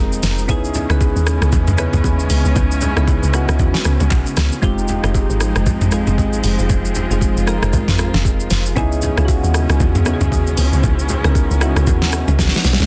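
A deep, round log drum bass anchors this late-night, hypnotic amapiano excerpt at 116 BPM, its dark, percussive notes decaying under a smooth, up-front R&B drum kit of soft kick, fat snare, handclaps, rim clicks, shaker, toms and hats that closes with a fill at 12.4 seconds. Mellow electric-piano-like synth keys with chorus and phaser move through Dbm7 and Fm7 chords, while a lush string section sustains vibrato-laden, sidechain-pumped chords behind them. Ringing congas and bongos sit in the background of a dense, heavily limited modern mix with digital ambience.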